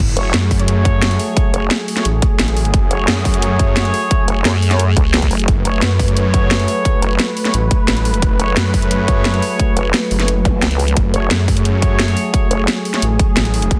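Dark technical drum and bass, aggressive and mechanical, this drop section is cut from a longer piece and runs at full intensity from the first second. An overdriven electronic kick with a punchy, roomy thud sits under a layered kit of cracking snare, bright hi-hats and crash cymbal, all pushed up front with overdrive. Two basses fill the low end: a thick, detuned sawtooth unison bass with chorus and tube saturation pumps against the kick, while a nasal, vowel-sweeping wobble bass, formant-filtered, saturated and compressed, sits forward in the mix from 0.2 seconds. Above them, an evolving, warbling pad with slow attack, 12-bit sampler grit and sidechain pumping holds an F#madd9 chord, and a vintage brass ensemble with light vibrato fires soft-edged stabs trailed by dub echo. A faint electronic zap flickers at 10.5 seconds, and the whole track is sealed by a dense, heavily limited modern master in a digital ambience.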